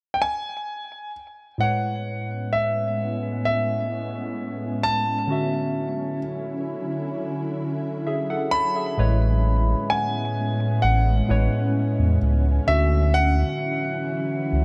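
A clear, intimate grand piano opens this smooth, dreamy contemporary R&B passage in A major at 65 BPM, its high melody carrying a touch of delay, audible action noise and long sustain. From 1.6 seconds, mellow detuned analog keys with chorus and a filter sweep lay down Amaj9 and Dmaj9 chords, soon joined by an ethereal, airy pad that swells in slowly with ensemble chorus and its own reverb. At 9.0 seconds a deep, round sub bass arrives up front, while a very quiet, woody marimba with soft mallets adds a brief high texture, all set in a small room with light reverb.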